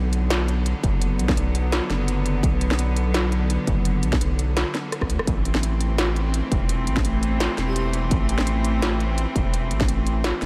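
Light reverb and a digital ambience frame this cinematic, heavy half-time drum and bass excerpt, where a close, reedy studio cello section bows sustained chords that pump against the sidechain over a deep, thick, saturated sub bass pushed up front. An industrial kit with a clanging snare, smooth hats and rim clicks is soon joined by a distorted electronic kick, and a drum fill at 4.9 s leads into the shift from Bm to Am at 5.3 s. At 7.7 s an airy, dreamy lead with chorus and vibrato flickers in very quietly on a single brief note.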